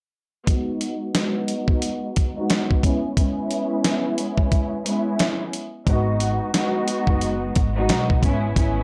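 A dark, gritty boom-bap hip-hop groove opens at 0.5 seconds with a bowed string section and a dusty, sampler-style drum kit entering together in a swung 4/4. The strings sit up front with a lush, vibrato-laden ensemble sound, their soft attack and smooth top colored by cassette-tape grain and a filter sweep that runs throughout. The compressed drums bring a thumpy kick, a fat snare and hi-hat, carrying the roomy character of a re-recorded large space. At 5.9 seconds a woody pizzicato upright bass joins low in the mix, its tube saturation adding weight beneath the harmony as it moves between G#m7 and C#m7/G#. The whole cut has a dry, hardware-driven texture with transformer saturation, and it is taken from a longer piece.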